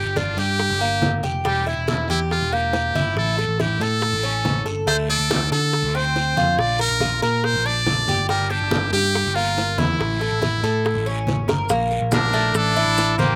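A straight 4/4 groove at 140 BPM drives this sultry, danceable Cuban son and guajira, with tight, high-tuned bongos close and dry, thick-skinned congas sitting distant in the background, a very quiet raspy guiro, and an amped picked electric bass up front over chords moving from Gm through Edim, A and Dm7. A bright, metallic Cuban tres picks arpeggios on double strings beneath a buzzy, forceful muted trumpet that carries the jazz-style melody with light vibrato and scooped notes, all in an outdoor setting with little reverb. After a drum fill, grainy maracas join at 11.7 seconds, and a second, vintage-toned trumpet adds a punchy lower line from 12.1 seconds.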